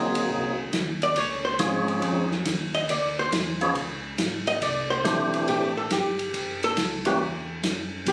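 A percussive tonewheel organ carries the melody up front, its fat, lightly overdriven tone marked by key click, second-harmonic percussion, chorus vibrato and a slow rotary speaker, before it drops out at 7.2 seconds. This is a swinging, bluesy soul jazz organ trio at 139 BPM in 4/4, with a swung eighth-note feel, cut from a longer piece. A miked and amplified hollow-body archtop guitar is also up front, its dark, clean, picked and compressed sound featured as a jazz solo across the whole 8.1 seconds. A second tonewheel organ holds down the bass in a mellow, round voice, also treated with chorus vibrato and a slow rotary speaker. A vintage acoustic drum kit enters at 0.1 seconds with hi-hat, ride, snare and a punchy kick, its dark cymbals and rolled-off top sitting in a small, pumping room. Captured on a phone in a club with moderate reverb, the passage moves through chords such as G#9, C#maj9, Dmadd9 and F#7(no3).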